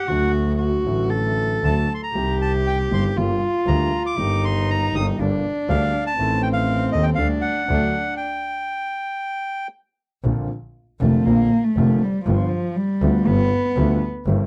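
A rubato 4/4 tango fragment, melancholic and dramatic, in which a reedy bandoneon sings the high melody until 9.7 seconds over a dark, airy-bowed cello second line, a warm piano with audible action noise and a clear, focused bowed double bass, all close and dry, before a shared stop at 8.2 seconds gives way to a cello solo from 10.2 seconds as the music settles into B-flat major.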